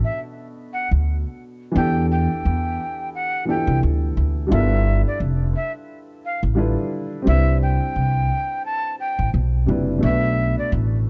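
The sound is dark and hazy, with light reverb framing an intimate lo-fi hip hop groove cut from a longer piece. At 87 BPM in 4/4 with a gentle 16th-note swing, the music sits in E minor and drifts through Bm7, Em7, G13 and Cmaj7 in a nostalgic, unhurried mood. A breathy jazz flute carries the melody from the start, its metal tone crisp and chiffy with a reedy edge, softened by a low-pass filter and trailed by analog delay. An upright piano with a short, woody sustain accompanies it, colored by cassette tape character and its own low-pass filter. Entering at 0.9 seconds, a pizzicato upright bass with gut strings adds a thumpy acoustic low end, sitting up front and louder than the other parts.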